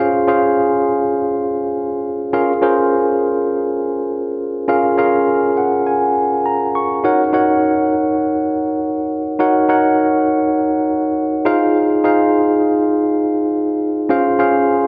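A glossy, nostalgic pop fragment at 102 BPM in 4/4 with a straight feel, in which a clean, up-front tine electric piano plays alone through its built-in speakers across the Db4 to Db6 range, adds a fill from 5.3 to 7.0 seconds over chords moving from Dbmaj7 through Bbm7, Ebm7 and Fm7 back to Dbmaj7, and sits in a dreamy mix soaked in a wet plate reverb with a 3.3-second tail, cut from a longer piece.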